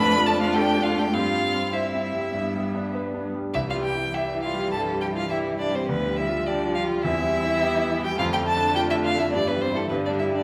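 A rich, focused violin carries the melody up front with vibrato, though from a slightly distant vantage, in this spirited, lively classical-period movement for piano quintet, cut from a longer piece. It moves at 103 BPM in 4/4 and C major with a rubato feel. The concert grand piano, also up front, gives a clear, natural accompaniment with deep bass. A warm viola adds bowed accompaniment in the background, shaped with vibrato and expressive portamento. Behind the melody, a second violin with a dark, woody tone and smooth top and a close-sounding cello trace second lines, all five players sounding together for the full 10.4 seconds. The harmony moves through Dm/F, C/G, G and C, returns to Dm/F at 8.2 seconds, and ends on G5, all bathed in a wet concert hall reverb.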